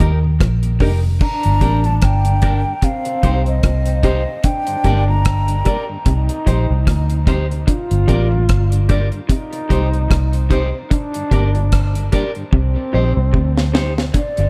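A round, punchy muted bass sits up front in this meditative, laid-back roots reggae piece in G minor, moving at 74 BPM with a swung sixteenth feel and circling between G minor and C minor. Beside it, a dry, deep reggae drum kit drives the groove with a tight kick, high-tuned snare, rim clicks, hi-hat and crash, and a drum fill arrives at 12.5 seconds. A dark, clean electric guitar carries dub echo, while a lo-fi, slightly broken-up guitar through a small old amp plays tremolo arpeggios in the background. A filtered, detuned chord stab with a fast pluck and phaser sits behind them, and a very quiet tonewheel organ with key click and slow rotary vibrato fills in underneath. At 1.2 seconds an airy, hollow concert flute states the melody until 5.8 seconds, and a clear trombone with a smooth top plays a second line, both touched with dub echo. The mix is echo-heavy with light reverb, and the clip is cut from a longer piece.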